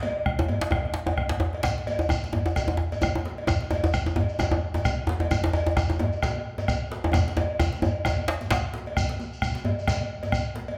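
Recorded live in one room with a wet, large studio reverb, this driving, festive West African drum ensemble swings in 4/4, with a hard-handed, medium-tuned djembe and a dark bombo up front, a soft-handed, deep second djembe, a distant metallic cowbell, and a grainy, mellow shekere that enters at 1.6 seconds, plus a drum fill from 7.1 seconds leading into a brief new section at 9.0 seconds.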